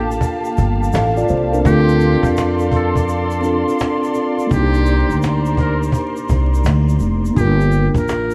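A muted trumpet, buzzy and breathy with scooped notes and light vibrato, carries a jazz-style solo through tape echo over a mellow tine electric piano with cassette-tape colour, smooth bowed strings that stop at 7.3 seconds, a woody, growly pizzicato upright bass up front, a snappy cajon with 12-bit sampler grit and a grainy tube shaker in the background, in this reflective, melancholic lo-fi hip hop excerpt at 84 BPM with swung 16ths in G minor, moving through Gm9, Dm7 and Cm9 inside a dreamy mix soaked in plate reverb and vinyl crackle.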